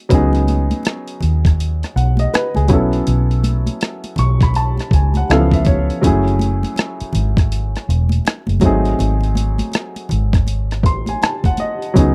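R&B and neo-soul in a smooth, soulful mood, this dry, close excerpt in a 1970s studio style rides a swung groove built on a gritty, pitched-down sampler drum kit with a thumpy kick, hi-hat and rim click, a round, foam-muted fingered electric bass, and congas with hard hands tucked in the background. A baby grand piano with audible action noise and short sustain carries the extended, altered chords up front, adding fills at 3.8 and 10.5 seconds.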